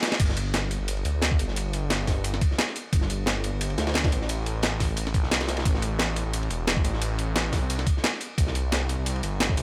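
Soulful and melancholic, this liquid drum and bass cut opens on a brief drum fill before the drop lands at 0.2 seconds, bringing in a thumpy, compressed electronic kick and a menacing, detuned sawtooth bass that evolves through a filter swell, sitting saturated and up front. Two breakbeat kits carry the groove: a gritty, tape-toned sampler-style kit with crash, hi-hat and a medium-tuned snare placed forward in the mix, and a crunchy acoustic kit from a small room, dark and smooth with rolled-off ride cymbal and snare trimmed by high-pass filtering. A studio reverb wraps the whole in space, lending the lightly swung pulse a moody depth.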